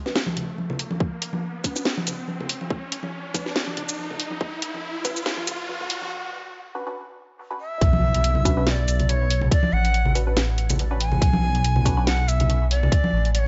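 Cavernous and dark, this deep dubstep cut moves with a half-time, swung feel built on a B dorian color. It opens on a build-up where an electronic riser climbs beneath a muted, phased dub chord stab whose filter sweeps, joined almost at once by a garage kit with a cracking snare and bright hats, plus congas with a thick, medium-tuned skin heard in a live room. A tight, layered electronic kick drum sits up front from 1.0 seconds, drops out at 5.1 seconds ahead of a brief break, then returns as the drop lands at 7.8 seconds with an impact. At the drop a rumbling, detuned saw bass takes hold in the low register, beating and sustained, while a breathy, reedy shakuhachi, entering just ahead of it at 7.6 seconds, carries the melody with vibrato and a soft attack, trailed by dub echo. The mix is lightly reverberant and rolled off at the top, leaving the sound dim and heavy, and the passage is cut from a longer piece.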